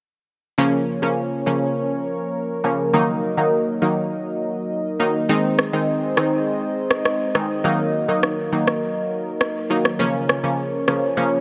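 Light reverb gives this short cut from a longer dancehall track a close, present sound, with its parts sitting up front. At 102 BPM in a straight 4/4, the feel is bouncy and tough, set in Eb dorian and tuned slightly below standard pitch, at A4 = 439 Hz. From 0.6 seconds, a round, detuned sawtooth pluck with a fast attack and decaying notes carries the accompaniment, colored by chorus, phaser and a filter sweep. Alongside it, a warm, smooth sawtooth pad with a soft attack and its own chorus holds sustained chords that move through Bbm, Ebm, Ab and back to Ebm, returning to Bbm at 10.0 seconds. An electronic rim click joins at 5.6 seconds and adds a produced drum pulse until just before the clip ends.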